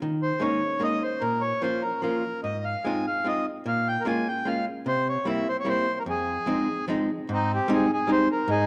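A musette waltz in F minor at 150 BPM in 3/4, played with a rubato feel and tuned to A4 = 439 Hz, this short fragment of a longer piece carries a bittersweet, nostalgic mood. An electric archtop guitar, clean, picked and hollow-bodied with a dark tone, opens the accompaniment at 0.0 s, and the reedy, full accordion takes the melody from 0.2 s, its dry tuning and band-limited, vintage character sitting up front beside the guitar. A wet recital hall reverb surrounds the warm production, and a new section arrives at 7.3 s on an Abmaj7 chord.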